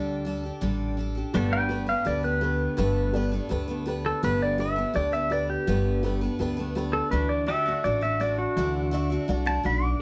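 Sunny and down-home, this brisk 166 BPM honky-tonk and classic country excerpt in G major sets a twangy lead pedal steel guitar over a bright, full-bodied picked acoustic guitar and a woody pizzicato upright bass, with a second pedal steel holding soft sustained chords in the background and a jangly, detuned upright piano joining at 1.3 seconds as the lead steel takes its solo, all in light reverb.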